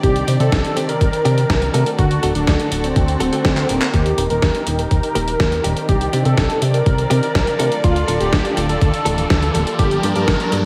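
A straight 4/4 pulse from a thumpy electronic kick and a gritty, dusty sampler-style kit of handclaps, hi-hat and gated-reverb snare drives this danceable, bittersweet italo disco excerpt, anchored by a glossy chorused synth bass. A thick, detuned unison lead carries the melody through tape echo and shimmer reverb, while a dark, woody string section and a bright, clean direct-recorded electric guitar playing stabs in the background both begin a filter sweep at 3.9 seconds, just after a short drum fill. A very quiet electronic riser enters at 6.6 seconds, and vinyl crackle in a light reverb colours the room.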